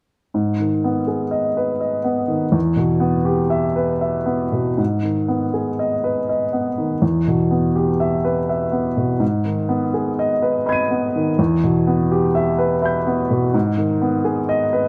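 A warm, woody upright piano carries this brief neoclassical minimalist piece alone, sitting up front with a natural tone and long sustain, its notes trailed by a slapback echo. The mood is wistful and intimate, moving in a three-beat metre with a loose, rubato feel that lets the time breathe. Its chords alternate between G# minor and E minor throughout, and the harmonic minor colouring lends the music a faintly melancholy edge. The piano ranges from deep bass notes up into the high treble, and a second section begins at 4.8 seconds and runs to the close at 14.9 seconds. Close, detailed miking and a light reverb keep the sound intimate, and the recording is cut from a longer work.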